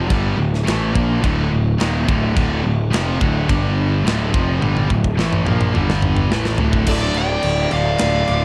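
A growly, overdriven bass sits up front in this dark, aggressive heavy metal excerpt, its fuzzy, picked tone grinding through the low end in a straight 4/4. Behind it, three distorted rhythm guitars stack the riff: a double-tracked, compressed fuzz guitar, a bright high-gain guitar and a scooped high-gain guitar, all picked and tucked into the background. A tight acoustic kit with a big-room sound, mid-forward presence and a medium-tuned snare drives the riff with crash, kick, snare and toms, playing a drum fill from 4.6 seconds. At 6.9 seconds the music drops into half time, and two shadowy high-gain lead guitars enter together, one carrying the melody and the other a second line beneath it. The production is dark, warm and lightly reverberant, and the passage is cut from a longer piece.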